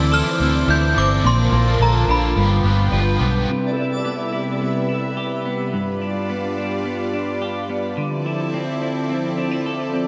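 Awash in a wet plate reverb, this dreamy, ethereal dream pop excerpt at 107 BPM in C major opens with a ringing, inharmonic FM synth chime melody, a bright overdriven electric guitar shimmering with tremolo and chorus, a round, punchy foam-muted bass up front, and a twinkling granular texture sparkling in the background from 1.0 seconds. The chime, overdriven guitar and bass fall away around 3.5 seconds, and the texture fades soon after, by 3.9 seconds. That leaves the thick, detuned sawtooth unison pad's sustained chords and the twangy, compressed clean electric guitar's chorused, delayed arpeggios, both present from the start, to carry the Cmaj7, G7 and Dm9 changes.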